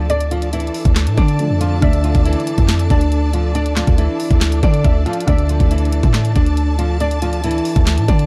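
Eerie and hard-hitting, this short trap passage from a longer hip hop piece sits in D minor at 139 BPM with a half-time feel, resting on a single Dm chord. A fingerpicked flamenco guitar carries the melody through tape echo, finger squeak and all, over a mellow felt-muted upright piano and a lush, bowed symphonic string section with vibrato. A lo-fi, warbly dusty pluck adds a second line through chorus, phaser and tape echo from 0.1 to 7.4 seconds, while up front a punchy, heavy 808-style bass and an electronic trap kit with knocking kick, sharp snare, bright hats and handclaps anchor the dark, dry production.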